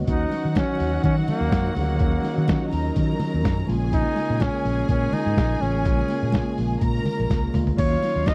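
Disco groove at 124 BPM in Eb minor, sultry and danceable, cut from a longer piece and moving from Ebm9 to Bbm7 and back. Up front, a breathy, whispered flugelhorn carries the melody with a soft attack and light vibrato, intimate and smooth on top. A gritty, compressed sampler-style drum kit sits equally forward, pitched down with a thumpy kick, medium-tuned snare and tape-warm tone, and it plays a fill from 7.3 to 7.8 seconds, while very quiet, damped congas with a thick skin enter at 0.3 seconds. A round, amped fingered electric bass anchors the low end, a mellow, clean tine electric piano provides accompaniment in the background, and a dark, woody string section holds sustained chords beneath a lush, bowed violin section playing a second line. The sound is dry and close, like a 1970s studio recording, with little reverb and a layer of vinyl crackle.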